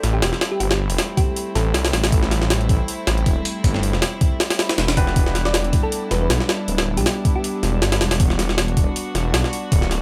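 A gritty, sampler-style jungle drum kit sits up front in this dark, nostalgic drum and bass excerpt. Its compressed, pitched-up hits pair a thumpy kick and high-tuned snare with hi-hat, carrying a tape-warm grain under studio reverb and a lightly swung sixteenth-note feel. Beneath it, a thick, menacing detuned saw bass runs throughout, its beating sawtooth tone pushed further by tube saturation. Soft-attack bowed strings hold sustained chords played sul tasto, floating with a smooth top as the harmony moves from Am7 to Em7 at 5.2 seconds. In the background, a round, tine-like FM pluck carries the melody in two short phrases with chorus and dub echo. A brilliant, polished grand piano adds stabs with its own dub echo at the very start and again from 5.0 seconds, and the whole mix sits in light reverb.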